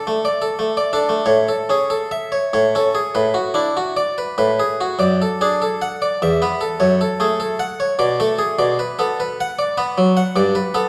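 A solo harpsichord in the Flemish style sits up front, its single set of strings giving a bright, airy, plucked sound across a range from E2 to F#5. This is a brief slice of a longer baroque-style suite movement in A major, set in 3/4 with a flowing, dance-like mood. The tempo moves freely in rubato, between 87 and 104 BPM. After a short opening gesture, the phrase settles onto A at 1.3 seconds and passes through Bm/A, G#m7, D/F# and F#m before arriving at Bm7 around 8.0 seconds. It ends on a rootless Em7/G at 10.4 seconds, as though mid-thought. A reverberant recital hall surrounds the instrument with a lingering 1.7-second decay.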